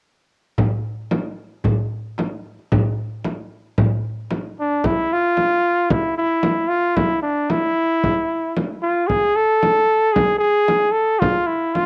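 A crisp metal-shell darbuka, played with hard hands, and a deep, large frame drum open this hypnotic, soulful Arabic maqam ensemble excerpt at 113 BPM in a straight 4/4, both sitting up front. At 4.6 seconds a clear, vintage-toned flugelhorn takes the solo melody between D4 and A4 with vibrato and a pop-style phrasing, and the darbuka drops out at 4.8 seconds, leaving the frame drum beneath the horn. The home cassette recording carries light reverb and a small room ambience.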